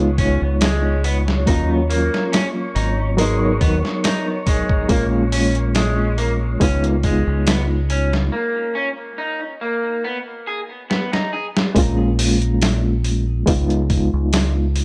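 A slow 70 BPM trip hop groove in 4/4 with a light swing on the sixteenths sets up this smoky, hypnotic excerpt in Bb phrygian. The sampler-style drum kit sounds compressed, pitched down and muffled, with a thumpy kick, a medium-tuned snare and hi-hat, overdriven and re-recorded in a small room so it sits up front beside a deep, round dub bass played with the fingers. An overdriven reed electric piano adds gritty chords through a combo amp with fast tremolo, while a bright, twangy, lo-fi guitar picks arpeggios through digital delay. An airy, breathy noise layer like wind hangs in the background with its own reverb until 8.3 seconds, where a break begins that closes with a drum fill from 10.9 seconds. The chords move through Db7, Ebm7, Abm7 and Bbm7, and the mix carries a light reverb.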